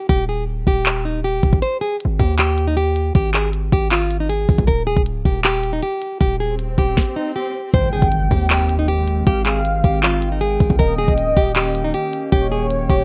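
Trap hip hop with a wistful, dreamy half-time feel, this excerpt opens on a full-bodied, fingerpicked nylon-string guitar melody through a low-pass filter, over a punchy, heavy 808-style bass and an up-front electronic kit of knocking kick, sharp snare, crisp hats and handclaps; a background swell from 6.5 seconds lands on an impact at 7.7 seconds, where a velvety, detuned synth lead with chorus, delay and vibrato and a hollow, flute-like pad join, in a mix carrying a worn, warbling cassette-tape pitch drift.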